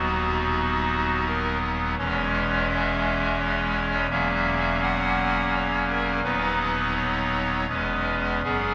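A solo pipe organ opens at once on a clarinet reed stop, its hollow, baroque-voiced tone sitting up front and shimmering with tremulant. This is a short, serene and majestic chorale-style passage in triple metre with a straight feel, cut from a longer piece and lasting just under 9 seconds. The organ carries everything alone, spanning from a deep D#1 up to F#5, with chords moving from B over D# through C#m over E and F#7 over E before returning to B and closing on C#m7. The harmony gives the passage a stately, majestic calm. The sound blooms into a generous church reverb that lingers for nearly three seconds, wrapping the reed voice in the resonance of a church.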